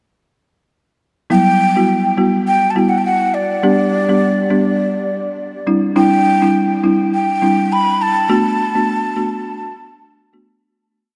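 Soaked in a huge, dreamy reverb, this brief, breezy and romantic afrobeats piece at 103 BPM swings gently as a woody, rustic folk marimba plays syncopated chords over Emadd9, G, Cadd9 and Bm7, while a breathy jazz flute with vibrato and a tongued chiff spins hook-like motifs through a diffuse ambient delay, both parts entering at 1.3 seconds before the piece fades out from 8.3 seconds.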